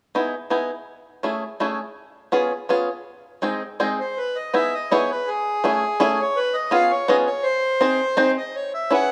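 A fingerpicked bluegrass banjo opens this short excerpt from a longer piece, twangy and percussive up front as it sets a whirling, charming musette waltz in 3/4 at 165 BPM in E major, tuned to A4 = 441 Hz. At 4.0 s a reedy, mid-forward accordion steps in with the melody as the harmony cycles through Emaj7, Amaj7, C#7 and G# before landing on C#m7. The rough home demo mix sits in a moderate plate reverb with a 2.4-second tail.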